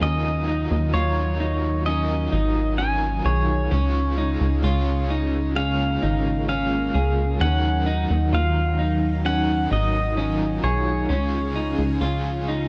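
A dark, warm production with light reverb frames this floating, dreamy dream pop fragment, cut from a longer piece and running about 12.7 seconds in a straight, unhurried 4/4. Up front, a punchy, funky analog bass plucks low notes with a fast attack and decaying, wave-folded sawtooth and square tones. Over it, a string machine voicing cellos lays down full, vintage, slowly evolving chords with a sub octave, long release and ensemble chorus, while a clean picked electric guitar spins arpeggios through lush chorus and tape echo. An overdriven electric guitar adds picked accompaniment colored by tremolo and analog chorus. The melody belongs to a bright, twangy pedal steel guitar, played with fingerpicks and slide, compressed, and drifting through volume swells and tape echo as the harmony alternates between Ebmadd9 and Db.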